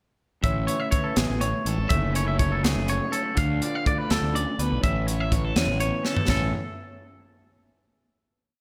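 A twangy electric guitar leads this short, intricate and bright piece of math rock and midwest emo, its clean, compressed, picked arpeggios running as an ostinato high in the mix with a slapback echo. Beneath it, an electric guitar through a small old amp plays a dark, slightly broken-up, lo-fi syncopated fingerstyle accompaniment, also carrying slapback echo. A fuzz fingered electric bass adds a round, punchy, overdriven syncopated riff up front, while a crisp fusion drum kit with a high-tuned snare and tight kick lays down an airy, polished 6/8 groove at 82 BPM in dotted quarters. The harmony moves through Amaj9, F#m9, Dm and Amaj7 in A major, and a drum fill at 6.0 seconds leads into a final chord that rings out from 6.3 seconds. Light studio reverb gives the whole a clear room around it.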